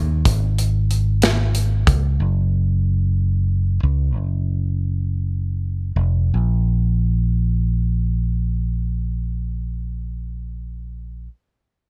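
A fingered electric bass opens this aching, melancholic six-eight pop ballad excerpt, its amped tone round and up front as it moves between F1 and Eb2. Almost at once a modern studio drum kit joins with hi-hat, a punchy kick and a medium-tuned snare, sounding acoustic and up front in a studio room, mid-forward with a rolled-off top. The drums drop out at 2.0 seconds, leaving the warm bass alone for the rest of the fragment. The tempo sits between 53 and 62 BPM in a straight 6/8, slowing down from 2.2 to 6.3 seconds, where the opening section gives way to a second one. Dry with little reverb, the passage carries on until the bass stops at 11.3 seconds.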